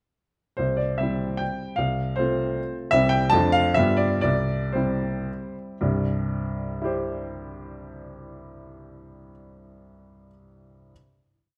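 A romantic classical triple-time dance for solo baby grand piano in C major, this short complete piece carries a graceful, proud character in 3/4 with dotted rhythms and a rubato feel, moving between 106 and 170 BPM. The piano sounds warm, open and up front, spanning C2 to A5, with a single-line melody above bass and chords that put a stress on the second or third beat. The harmony moves from C through F over C, back to C, then Dm over F and G7 before settling home on C. From 2.4 seconds the tempo slows through the end of the main section at 5.8 seconds, where a final chord takes over and holds until 8.8 seconds. Close, detailed microphones capture the instrument in a recital hall with moderate reverb, giving the ring of the last chord a natural tail until the piano ends at 10.9 seconds.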